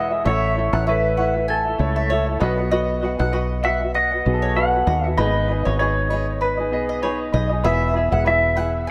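A dark, clean lap steel guitar carries the melody from the first moment of this easy-going, sunny acoustic pop piece, its slide tone compressed and scooped, with volume swells. Beneath it, a punchy, foam-muted fingered electric bass sits up front, direct and bright, while a thumb-plucked tenor ukulele adds light, bright acoustic accompaniment and a grand piano fills in brilliant, natural accompaniment. A picked mandolin with doubled strings weaves round, warm arpeggios through the middle register. The groove moves at 97 BPM in 4/4 with a slight swing on the sixteenths, and the harmony travels from A to B, then G#m at 5.2 seconds and E at 7.6 seconds. A moderate plate reverb with a long tail gives the short passage, cut from a longer piece, an airy sense of space.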